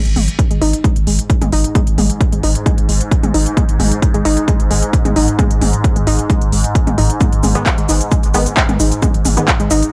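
Driving at 132 BPM in a straight 4/4, this hypnotic peak-time techno excerpt tuned to A4 = 439 Hz and centred on G#5 sets an overdriven, heavy electronic kick and an overdriven kit of handclaps, smooth hi-hats, shaker and toms over a deep, saturated sine sub bass on G#1, while a lo-fi, detuned pluck riff with chorus and digital delay warbles between G#3 and D#4, a swarming, granular drone on G#2 with phaser and built-in reverb hovers beneath, most parts pump to the sidechain, and a muted, detuned dub chord stab with tape echo arrives at 7.6 seconds, all in light reverb.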